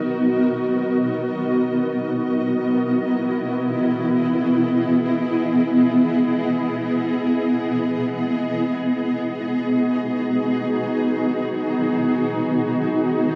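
Drenched in a huge reverb with a long tail and a dark, warm production, this ambient excerpt feels serene and melancholic as it drifts along. A solo granular cloud pad sits up front from 0.0 to 13.4 s, its blurred, detuned sine tones swelling in slowly and hanging in sustained, mellow layers that shift over Bmaj7, Emaj7 and Abm7. Its own built-in reverb and delay thicken the full-bodied, evolving haze.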